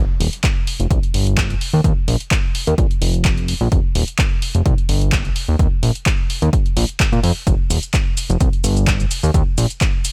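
A fat, saturated analog bass opens this soulful, energetic piano house excerpt at 128 BPM, its detuned sawtooth and square tones thickened with ring modulation and pumping against the sidechain as it moves between Eb1 and Bb2. A punchy analog drum machine arrives at 0.2 seconds with cabasa, handclaps and hi-hat, its tape-warm character sitting lower in the mix. An up-front electronic kick drum joins at 0.4 seconds, anchoring the steady 4/4 pulse with a light 16th-note swing. The bass stays prominent throughout, its fast attack and sustained, mellow body shaped by a filter sweep. A digital ambience surrounds the parts, and the bass stops at 9.7 seconds, so the drums close out the clip.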